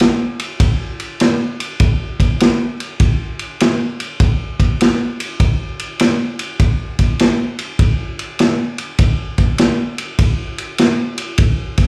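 A swung eighth-note feel at 100 BPM in 4/4 drives this gritty rock fragment, cut from a longer piece and running just under 12 seconds. A vintage acoustic drum kit carries the whole passage on its own, built from kick drum, snare and ride cymbal. The kick lands punchy, the medium-tuned snare cracks through a mid-forward kit, and the dark ride sits under a rolled-off top end. The kit is placed up front, with a warm character. The sound comes across like a live gig heard through a club's PA, wrapped in a moderate club reverb that gives the driving groove a slightly rough, in-the-venue edge.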